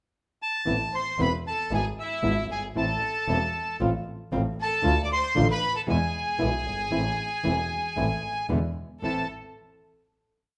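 A rubato tango pulse at 115 BPM in A harmonic minor drives this brief, melancholic and sultry piece: a bright, reedy bandoneon carries a motif-based melody up front from 0.4 seconds, a thumb-plucked flamenco guitar with fresh strings adds short chords, a bowed double bass with a rich gut-string tone marks a marcato four, and a clear chamber violin section with light vibrato and a biting, earthy edge doubles a distant second line in octaves, inside a moderate large-studio reverb that frames the closing A minor chord at 9.0 seconds.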